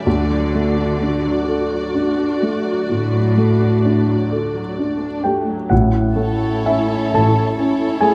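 Passionate and lyrical, this romantic movement for piano and orchestra unfolds in a lilting 12/8 with a freely breathing rubato, heard as a short passage cut from a longer piece. A present, up-front baby grand piano carries the melody across a broad range from the outset. It is joined by a smooth, bowed violin section high above, while violas add lush, expressive accompaniment with vibrato and portamento, and a rich cello section anchors the bass. At 5.7 seconds the harmony moves and the texture deepens as a mellow French horn section enters in the background with sustained chords. A distant double bass section and softly struck timpani with a round tone arrive at the same moment, and the timpani stops at 7.1 seconds. A second, focused violin line joins at 6.2 seconds, and a moderate scoring-stage reverb gives the ensemble a spacious glow.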